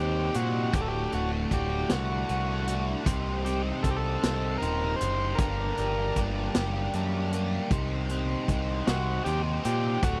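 A dry, close recording in a 1970s studio style opens this short cut from a longer psychedelic rock piece, trippy and hypnotic as it rolls along at 52 BPM in 6/8. A buzzy vintage combo organ carries the melody through a tape echo, while a reedy, breathing pedal harmonium sits in the background with mellow, dark sustained chords. Up front, a biting, double-tracked overdriven guitar plays a riff colored by flanger, and a growling picked electric bass adds a bright, amped overdriven edge underneath. The vintage drum kit enters at 0.3 seconds with a punchy kick, a medium-tuned snare and hi-hat, its top rolled off. The harmony moves from C minor through D, back to C minor, then to G minor add9 at 5.4 seconds before returning to C minor.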